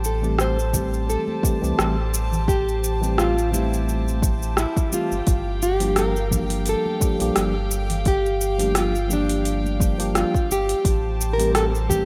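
Sunset chillout in G dorian at 86 BPM with a relaxed, smooth 16th-note swing, this 12.1-second fragment of a longer piece sets a dark, fingerpicked nylon-string guitar melody with delay and audible finger squeak over distant, floating bowed chamber strings, a round sine sub bass warmed by tube saturation, a clean tine electric piano entering at 0.2 s, a smooth R&B kit of metallic hi-hats, rim click and shaker, and, from 0.7 s, an up-front overdriven electronic kick beside very quiet high-tuned congas, all moving from Am7 to Gm7 and back inside a lush hall reverb in a rough home demo mix.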